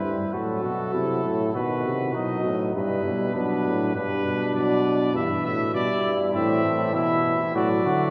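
A brass quartet opens together at once in a short passage cut from a longer classical canzona, elegant and joyful in mood, moving at a steady 100 BPM in a straight 4/4. The clear trumpet carries the melody between A4 and E5 with a light vibrato, sounding distant and roomy, while the punchy flugelhorn shapes a second line beneath it. A warm, vintage-toned trombone supplies the accompaniment, also with light vibrato, and a bright bass trombone sits up front on the bass line, ranging from G2 to D3. The harmony opens on F#dim/A at 0.3 seconds and passes through B, Em/G, G and Am before settling on F#m/A at 7.6 seconds. A wet cathedral reverb with a 5.8-second decay places the ensemble further back in a vast, resonant space.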